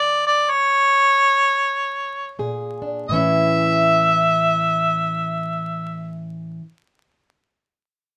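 In free time that slows through the opening seconds, this brief fragment of acoustic country blues has a swaggering, rollicking mood. A mellow harmonica carries the melody up front, playing a jazz-style solo with light vibrato and scooped notes that give it a vintage flavor. It plays alone at first, until a fingerpicked, plugged-in old ladder-braced acoustic guitar joins at 2.4 seconds on a Bb7 chord, then settles onto A. The guitar is also up front, though quieter, as accompaniment, its old strings sounding dark, woody and boxy, and it rings on briefly after the harmonica stops, until 6.7 seconds. A moderate booth ambience and a layer of vinyl crackle frame the duo with an intimate, old-record character.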